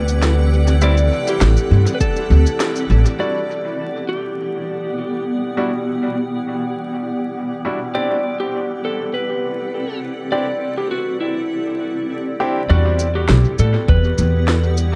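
Deep and hazy, this ambient dub excerpt floats on a cloudy, blurred granular pad, a breathy, wind-like noise texture in the background and a bright, slightly broken-up electric slide guitar melody trailing dub echo. A clear, intimate upright piano with audible action noise plays echoing stabs through the middle, while a thumpy pizzicato upright bass, a deep up-front electronic kick and an electronic shaker with a woody, small-room snare carry the opening, with a band accent at 2.6 seconds. The rhythm section falls away near 3.0 seconds. The bass returns at 12.7 seconds with the drums following shortly after, all set in an echo-heavy mix with light reverb and vinyl crackle.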